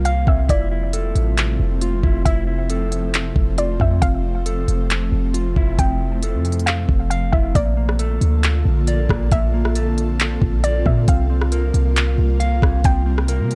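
A deep, boomy 808-style bass sits up front in this floating, blissful cloud-rap excerpt at 136 BPM in a half-time 4/4 feel, joined from 0.1 seconds by an electronic R&B kit of knocking kick, smooth hats, handclaps and rim clicks roughened with vintage 12-bit sampler grit. Above them, an ethereal pad with ensemble chorus, reverb and sidechain pumping holds sustained chords in F major, while a mellow, fingered electric guitar plays arpeggios through a low-pass filter and analog delay. A soft, round pluck carries the melody with chorus and delay, and the harmony moves from Fmaj7 to Bbmaj7 at 7.6 seconds and C7sus4 at 11.1 seconds, all within a dry, gritty digital ambience.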